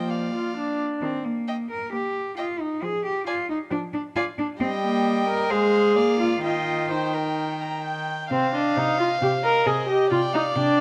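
All four members of a string quartet begin together in a quick, stormy classical-period movement in E-flat major at 134 BPM, their bowed gut-string, period-style tone carrying a reedy edge. The first violin takes the melody over a second violin with an airy bow, while a nasal viola and a rich cello sit up front beneath them, captured by close, detailed microphones in light reverb. At 8.3 seconds the restless harmony turns to C minor as this passage, cut from a longer piece, moves into a new section.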